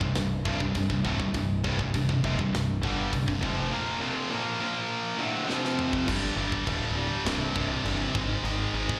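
This short, dark and epic heavy metal excerpt opens at once with three electric guitars, a growling bass and a tight drum kit all playing together at 101 BPM in a straight 4/4, in C minor. The guitars churn out riffs between C2 and Bb3: a biting, overdriven, double-tracked part, a heavy high-gain part with distortion, and a scooped high-gain part sitting up front, each carrying a slapback echo. Beneath them the picked electric bass, overdriven and forward in the mix, rumbles low from C1 to Ab1, while the acoustic kit, with its tight kick and medium-tuned snare, drives things along on crash, hi-hat and toms. The power-chord movement runs from C5 through Bb5, D5 and F5, and a drum fill from 5.5 to 6.1 s leads into a new section, where the biting guitar drops out and the chords shift through G5, C5 and Ab5. The whole band sounds like a live gig heard through the venue's PA, with small-room ambience and a hall-like reverb around it.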